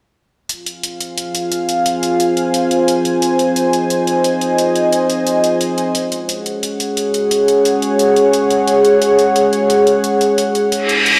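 An overdriven electronic hi-hat opens this tense, aggressive fragment of dark technical drum and bass at 176 BPM in F phrygian, its bright, layered hats joined at 0.9 seconds by a deep, up-front analog pad of detuned sawtooth and sub-octave tones that swells in slowly under chorus. The pad holds sustained chords moving from Fm7 to Gbsus2 at 5.9 seconds, its moody, evolving body filling a lush hall reverb that sounds as though played through a big system in a bare room. A reverse cymbal surges forward at 10.8 seconds just before the cut.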